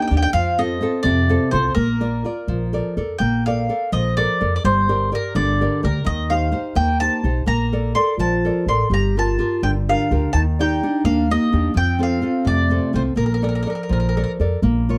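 A 6/8 pulse at 84 BPM, loosened by rubato, carries this lively, romantic Italian folk serenade in Bb major, drifting through chords such as Bbmaj7, Gm7 and Ebmaj7. Up front, a round, picked mandolin on double strings sings the melody over a bright, full-bodied fingerpicked nylon-string guitar and a woody, growly pizzicato upright bass. At 8.0 s a clear, close-miked clarinet in classical style joins with a second line, all set in light reverb in this passage cut from a longer piece.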